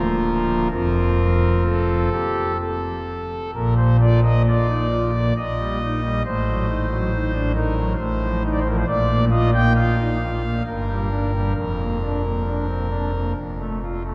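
Majestic and serene, this excerpt of a classical chorale-style piece in Bb major moves at a rubato 62-69 BPM in 3/4 time, tuned to A4 = 439 Hz. A solo pipe organ on foundation stops plays up front with a thick, romantic voicing that spans D1 to G5, passing through a diminished chord and a dominant seventh before settling on F at 13.4 seconds. A wet cathedral reverb with a 6.0-second decay surrounds the organ and lets each chord hang in the air.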